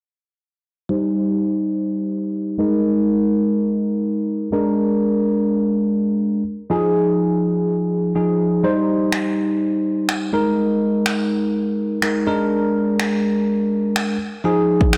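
A bright, bell-like tine electric piano carries this energetic, driving dance-pop excerpt at 124 BPM in C minor, its lush chorus, sidechain pumping and filter sweep shaping the Cm–Absus2–Bb7–Fm7 progression before a punchy, overdriven pop drum kit of kick drum and finger snaps enters at 9.1 s, with soft clipping on the snare, all within a blown-out recording bathed in a wet plate reverb.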